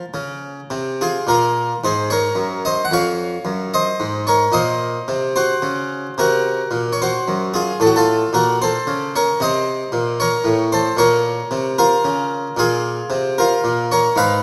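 Classical baroque-style suite movement for solo harpsichord in 12/8 with a rubato feel, flowing and introspective in mood, cut from a longer piece. The Flemish-style harpsichord sits up front with a plucked, brilliant tone doubled by octave strings, moving through a minor-key progression that returns home to its opening chord near 11.0 seconds. A wet recital hall reverb surrounds the instrument, lending the short passage a spacious, resonant setting.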